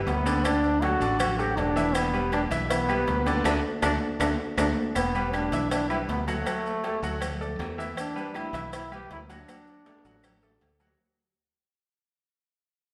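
Set in a reverberant recital hall, this fiery, danceable salsa clip at 159 BPM puts a distant, roomy trombone solo up front, its vibrato-laden pop-style melody riding over a worn, intimate baby grand piano with audible action noise and short sustain, playing chords that move between D and Em7. A growly, direct fingered electric bass anchors the low end, while background percussion fills in: ringing high-tuned congas played with soft hands, a round, low-tuned cowbell, metal-shell timbales and agogo bells, grainy vintage maracas, and very quiet woody claves. The band hits an accent from 3.5 to 5.0 seconds, with a drum fill joining at 3.8 seconds, then the music fades out from 5.0 seconds, with a final fill near 9.9 seconds.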